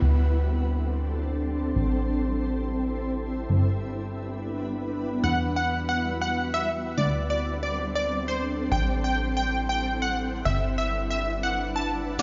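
A shimmering, ethereal pad of detuned, chorused chords opens this driving, bittersweet uplifting trance passage, joined from the start by a plucky, mellow analog bass up front and a very quiet downlifter that ends by 1.8 seconds, while the harmony cycles through D7sus4, Am7, G6 and Emadd9. At 5.2 seconds a punchy, detuned supersaw stab takes the melody through a low-pass filter and dub echo. At 12.2 seconds a faint riser and a very quiet, layered electronic kit with a punchy snare arrive at the cut, all heard as if played on a big sound system in a bare stone room with a dull top end.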